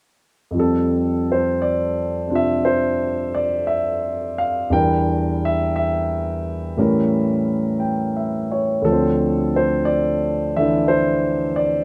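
An intimate, romantic jazz ballad excerpt in F major opens with a solo concert grand piano at a slow 58 BPM with a gentle swing, its deep bass, open tone and long sustain sitting up front in a dark production with light reverb as the harmony moves from F through Em7b5 and A7b9 to Dm7 before the piano stops at 11.8 seconds.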